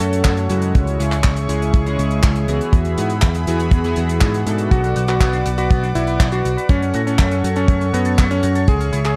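This bittersweet, danceable italo disco passage, cut from a longer piece, opens with a smooth, detuned analog pad holding sustained chords under a chorus, while a glossy, retro polysynth fires pulse-wave and sawtooth stabs with a filter sweep, colored by cassette tape and tape echo. A growly, punchy picked electric bass sits up front with tube saturation, and a damped 70s drum kit adds dry handclaps and hi-hat in studio reverb, joined at 0.2 seconds by a tight kick that leads the mix. The groove moves at 121 BPM in a straight 4/4, tuned to A4 = 445 Hz, cycling through F#m, C#m, Eadd9 and Bm before returning to F#m. At 4.7 seconds a clear, vintage electric grand piano takes the melody through a digital delay, its bass end clangy, shortly before the polysynth drops out at 4.9 seconds. At the same point as the piano, a clean electric guitar with an envelope filter picks arpeggios in the background, roughened by 12-bit sampler grit and tape echo, all within a dark production and light small-room ambience.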